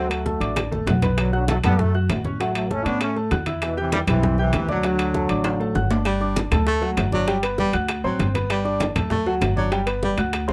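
A sunny, festive salsa in G major moves at a brisk 197 BPM in straight 4/4, cut from a longer piece. A bright, punchy trombone section carries the melody up front with light vibrato and a smooth top, playing until 5.9 seconds, while a clear, present grand piano accompanies throughout. Underneath, a dark, woody upright bass is plucked up front, and a percussion bed of tight, high-tuned bongos, thin-skinned low-tuned congas, ringing metal-shelled timbales and very quiet, close claves keeps the groove going, with drum fills around 0.6 and 5.5 seconds. At 6.1 seconds the music moves into a new section where a breathy baritone saxophone takes a second line, close-miked, whispered and intimate, with a soft attack and vibrato. The harmony opens on D, Bm7, A6 and Em before shifting toward Gsus2, G, D7 and Gadd9, all set in light reverb.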